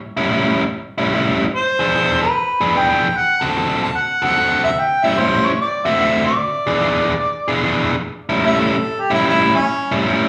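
A mellow, jazz-style harmonica with light vibrato and scooped notes enters at 1.6 s and takes a solo from 8.0 s, its overdriven, delay-laden tone sounding distant and roomy above an up-front, biting electric guitar riff, picked with a slapback echo, in this laid-back, swaggering 148 BPM swing blues in A, which is cut from a longer piece and heard as a live club gig through the venue's PA with light reverb.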